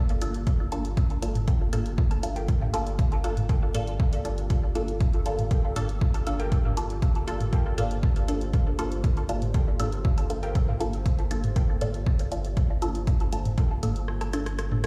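A cavernous, nocturnal dub techno excerpt at 119 BPM in G minor opens on a deep, moody pad holding a Gm9 chord in the background, with chorus, built-in reverb and sidechain pumping, over a soft, round sub bass on G1 that also pumps. Muted, detuned chord stabs with phaser and dub echo carry a filter sweep throughout, while a tape-warm analog drum machine ticks hi-hat and rim click and a punchy, up-front kick drives the groove. Electronic woodblock and toms, re-recorded in a large room, enter at 1.2 seconds with dub echo, joined by a warbling, lo-fi pluck riff in the background, before the kick drops out at 14.1 seconds for a drum fill, all set in a big, bare-room sound with large studio reverb.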